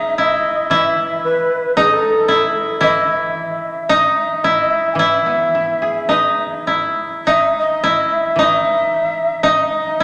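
In a rubato 2/4 pulse hovering around 52-57 BPM, this austere, calm piece of Japanese chamber music in E sets a breathy, tongued shakuhachi melody with vibrato over two woody, fingerpicked kotos, one up front on a second line and the other a mellow, softer accompaniment, all bathed in a lingering church reverb as the music moves into a new section at 7.3 seconds before the cut at 10.0 seconds.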